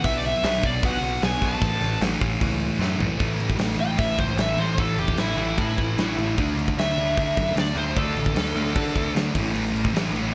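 Punk rock at 151 BPM in A major, energetic and rowdy, with a big, dark acoustic drum kit up front driving a punchy kick and a fill at 2.8 seconds, a sludgy, double-tracked distorted guitar riff, a growling, bright overdriven picked bass, and a smooth, warm overdriven lead guitar whose solo begins at 3.2 seconds over power chords moving from A5 to D5 and back, all in a dry sound cut from a longer piece.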